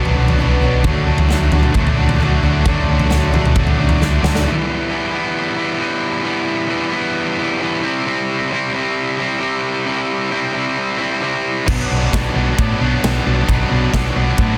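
A bright, compressed distorted electric guitar sits up front, picking a brooding riff in E minor that runs through the whole of this angsty quiet-loud alternative rock fragment at 133 BPM in a straight 4/4. For the first 4.5 seconds, over Bm and D chords, it is joined by a heavy high-gain guitar riffing in the background, a boxy acoustic guitar picking swing-style arpeggios also in the background, a dark, round hollow-body short-scale bass played with the fingers through an amp, and a big, natural-sounding acoustic drum kit with a punchy kick, a medium-tuned snare carrying soft clipping, toms, and crash and ride cymbals with a glittering edge. A drum fill closes this opening, and from 4.5 seconds the distorted guitar carries on alone over Em and C. At 11.7 seconds the high-gain guitar, bass and drums return on Bm, while the acoustic guitar stays out. The sound places the band in a small room, with a dense, heavily limited modern master.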